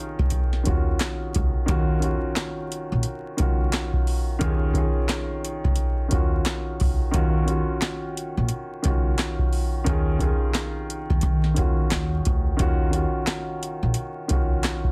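A booming analog drum machine leads this gritty, tough boom-bap hip-hop excerpt at 88 BPM in Eb minor, its deep kick, tonal snare, metallic hats and handclaps swung on the 16ths, with a short room on the snare, clap and hats and a tape-warm edge. Up front beside it, a dark, mellow upright piano plays over Ebm9 harmony through cassette tape and filtering, its vintage, smooth tone sitting over a woody, pizzicato upright bass on steel strings that plays from 0.2 to 14.6 seconds. The dense, heavily limited master carries vinyl crackle and little reverb, keeping the groove close and hard.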